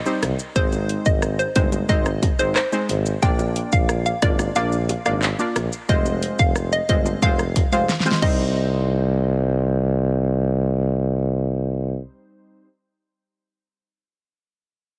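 Sultry and tough, this dancehall excerpt moves at 90 BPM in C minor over a Cm, Ab, Bb, Fm progression, with little reverb and a heavily compressed radio sound. A punchy, layered electronic pop kit with fat snare, metallic hats, handclaps, shaker, rim clicks and crash carries a vintage 12-bit sampler grit and drops in a fill at 7.9 seconds, joined by very quiet, tight, high-tuned bongos and an up-front tuba with light vibrato and a smooth top anchoring the bass. Brassy, nasal, detuned sawtooth stabs with chorus fill out the accompaniment, while a hollow, bouncy square-wave pluck carries the melody through chorus and delay.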